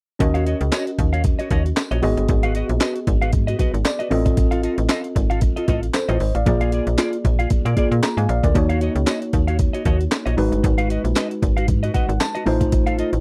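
Early-eighties boogie funk at 115 BPM in Eb minor, this danceable, slick excerpt rides a lightly swung 16th groove built on a snappy, metallic slap-like FM bass and a compressed, gritty breakbeat sampler-style kit with a thumpy kick, medium-tuned snare, hi-hat and handclaps, both up front. A worn, slightly out-of-tune tine electric piano with light overdrive comps through Ebm7, Abm7, F7 and Bb7 changes and adds fills at 3.6 and 11.7 seconds, while a dark, clean, fingered electric guitar with analog chorus plays a riff. A jingly vintage tambourine sits in the background from 0.7 to 12.3 seconds, and the whole mix has a dry, close 1970s-style studio sound.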